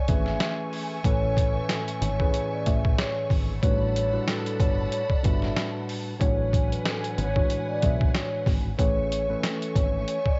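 A swung, head-nodding boom-bap groove at a relaxed pace drives this nostalgic, soulful hip-hop excerpt, where a gritty, pitched-down sampler kit with a thumpy kick sits up front over a round, foam-muted dub bass, a mellow tine electric piano comps through Amaj7, Gmaj9 and E13 chords, a ringing soft-mallet vibraphone with slow motor vibrato carries the melody, and distant lush strings and delayed jazz horn stabs hover in the background, all wrapped in the hazy, band-limited sound of a home cassette recording in a small room.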